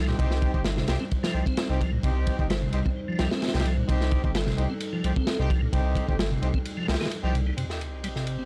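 Gritty and raw, this short breakbeat excerpt moves at 130 BPM in a straight 4/4, sitting on a C minor chord in C dorian. A crunchy acoustic breakbeat kit drives it up front, with a tight kick, a medium-tuned snare and dark ride cymbal, all saturated with a rolled-off top, while a deep, thick sine sub bass sits underneath with tube saturation. A piping, scooped tonewheel organ plays the riff through a slow rotary speaker, chorus vibrato and light overdrive, its key click joined by sampler grit, a low-pass filter and tape echo. Punchy horn stabs with light vibrato cut through from 0.1 seconds, carrying their own tape echo, and a moody, detuned analog pad holds sustained chords in the background, pumping under sidechain with chorus and ring-modulated shading. At 7.6 seconds an electronic sub drop lands as an impact, just after the bass stops at 7.5 seconds. The sound is dry and hardware-driven, colored by transformer saturation and cassette tape.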